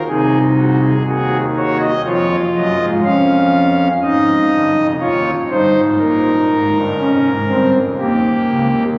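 A solo pipe organ on thick, romantic foundation stops sits up front through this contemplative yet driving baroque-style three-part fugue excerpt at 60 BPM in 4/4, spanning Db1 to F5 from 0.0 to 8.9 seconds over chords moving from Ab7/C through Db/F, Ab and Bbm7 to Eb7, all wrapped in a wet cathedral reverb with a 5.0-second decay and captured on a phone in the room.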